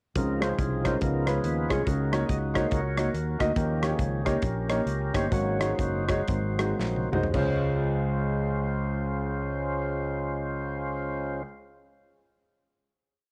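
This short home recording on cassette has a small-room ambience and tape grain on the piano, organ and drums, and it opens straight into an uptempo gospel breakdown in Db major, swung at 107-141 BPM with a reverent, hopeful mood. A lightly overdriven tonewheel organ sits up front through a fast rotary speaker, holding full chords with audible key click and taking the solo from 0.2 to 7.3 seconds. Beneath it, a clear concert grand piano with deep low notes places off-beat chords, while a dark, round fingered electric bass walks and runs with chromatic approach notes. An airy, polished studio kit drives a two-beat praise groove with a tight kick and medium-tuned snare, then plays a fill before dropping out at 7.5 seconds. The tempo slows through the Eb7 and Ab7sus4 changes, and the band settles onto a closing Dbmaj7 that rings out to the end.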